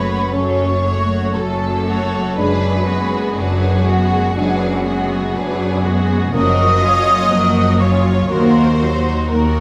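A reverberant scoring-stage sound frames this yearning, melancholic fragment of a slow romantic orchestral movement, moving at 57-63 BPM in a rubato 4/4 through F#m, G#m7b5/F#, Gbmaj7 and Ebm. Smooth, lightly vibrato violins carry the melody while a second, lush violin section and an airy, expressive flute section above trace second lines, and background violas with portamento fill the accompaniment. Intense cellos and woody double basses anchor the bass, and distant, dark French horns hold sustained chords from 0.3 to 8.7 seconds.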